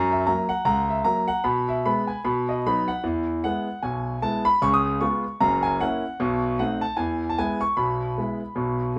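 A solo concert grand piano opens this brief, playful stride jazz fragment, cut from a longer piece. The piano sits up front and feels intimate, with deep bass, a slightly boxy body and long sustain, and the clatter of its action is audible. The swing is moderate, and the playing ranges from the low bass up into the high treble. After a short opening passage, a new section begins at 3.0 s, moving through C#7, F#7 and B7b9 before settling back on E. A moderate small-room reverb keeps the sound close and the mood swinging.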